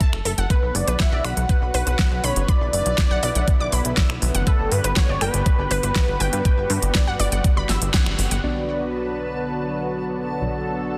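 A straight 4/4 pulse at 121 BPM drives this bittersweet progressive house excerpt in B minor, where a knocking, up-front electronic kick and a pop kit of fat snare, crisp low-passed hats and finger snaps anchor a punchy, funky analog bass, while gritty, bright unison pluck arpeggios with digital delay, a thick, dark unison lead with vibrato and a lush, nasal chorused pad all breathe with sidechain pumping. After a band accent at 7.9 s, glossy, retro chorused polysynth stabs enter at 8.4 s over the continuing bass and pad, joined at 8.9 s by a dreamy, reversed swelling texture with built-in reverb, all within a dense, heavily limited modern master.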